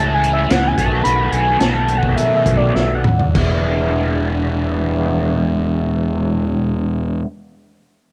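This psychedelic rock fragment, cut from a longer piece in E mixolydian, has a hazy, kaleidoscopic mood and a straight 4/4 pulse at 97-113 BPM that slows down across its first 3.4 seconds. A screaming, sawtooth-edged synth lead solos from the start, its guitar-like, saturated tone colored by chorus, vibrato and tape echo, and it falls away at 3.2 seconds. Underneath, a double-tracked overdriven guitar sits up front with a dark, picked riff fed through a rotary speaker and low-pass filter, with a filter sweep over the opening section. A growly fuzz bass played with the fingers anchors the low end. A crunchy breakbeat kit with a high-tuned snare, tight kick and rolled-off top plays until 3.5 seconds, ending in a fill, while the chords move from A to B7 and on to E7 in a light reverb.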